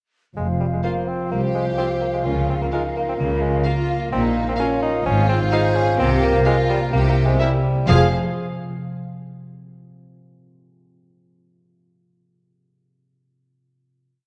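This playful, whimsical film cue in F minor opens at 0.4 seconds with a full woodwind, brass and string bed: a clear bassoon carries a classical-style line with light vibrato while a mellow, distant clarinet and an airy, bright flute ensemble hold sustained chords in the background. Beneath them, a dark French horn section adds roomy, softly attacked chords, a concert harp rings out in broad thumb-plucked broken chords, and rich bowed double basses double the cellos' focused bass notes on the beats. At 0.8 seconds a dark studio violin section takes the melody with expressive vibrato and portamento, alongside violas playing after-beat chords. Soon after, a lush symphonic violin section weaves a smooth, even counter-melody. Moving at 128 BPM in a straight 4/4, the magical, sneaky mood passes through a C7 before settling on an F minor final chord at 7.9 seconds, all wrapped in the dark, wet reverb of a scoring stage.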